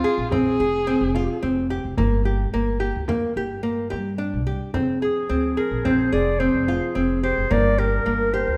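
A wet recital-hall reverb surrounds this urgent, hypnotic fragment of contemporary chamber music in 5/4 at 108 BPM, moving between F minor and G minor. A woody, fingerpicked nylon-string guitar with old strings plays arpeggios up front, over thumpy gut-string pizzicato upright bass and a soft-handed frame drum in the background, while a dark, bowed viola adds a brief expressive second line with vibrato and portamento in the first 1.4 seconds. From 4.7 seconds a mellow, tight woodwind section holds sustained chords behind, and at 5.0 seconds a warm, classical-style solo clarinet takes the melody up front.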